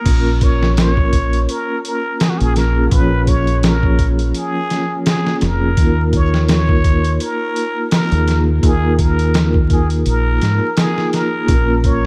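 A plunger-muted trumpet carries the melody, its raspy, growling tone scooped into each note with a soft attack and light vibrato, close-miked and trailed by tape echo. This is a cinematic, melancholic trip hop piece at 84 BPM in 4/4, with a lazy 16th-note swing, cut from a longer work. Underneath, a soft-mallet vibraphone rings with a mellow, metallic shimmer and tremolo, while a deep dub fingered electric bass sits round and punchy in the low register. The sampler-style drum kit is up front, pitched down and gritty, with a thumpy kick, a medium-tuned snare, hi-hat and crash cymbal in a small room ambience. The harmony moves from Bbm to Ebsus2 at 5.8 seconds and back to Bbm at 11.5 seconds, all wrapped in a dark production with vinyl crackle.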